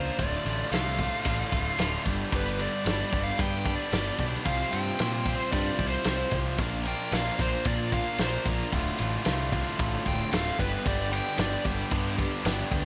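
Quiet-loud alternative rock at 112 BPM with a cathartic, brooding mood, this excerpt sets a dark, smooth overdriven lead guitar melody over a bright distorted guitar riff, a fuzzy picked bass, a loose indie drum kit with fat snare and punchy kick, a very quiet twangy twelve-string playing clean arpeggios until 4.5 seconds, and a compressed overdriven guitar with spring reverb entering in the background at 4.4 seconds, all moving through Dm, G, Csus4 and Bb.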